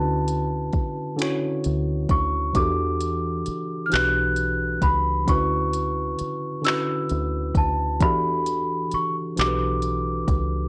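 A large celesta carries the melody high above everything else, its bell-like, delicate tone ringing sweet and bright from the front of the mix. This is a slow, sultry six-eight R&B piece at 44 BPM in E dorian, a yearning fragment cut from a longer work that sways between Dmaj13 and Em11 chords. Beneath the celesta, a barky tine electric piano plays the accompaniment, lightly overdriven through a combo amp and sounding worn and slightly out of tune. A deep dub fingered electric bass holds the low end with a dark, round, punchy, foam-muted tone. A smooth electronic drum kit enters at 0.3 seconds with finger snaps, handclaps, soft kick and hi-hat, sitting up front and re-recorded in a large room. Light reverb and the warbling pitch drift of old cassette tape give the whole recording a hazy, aged character.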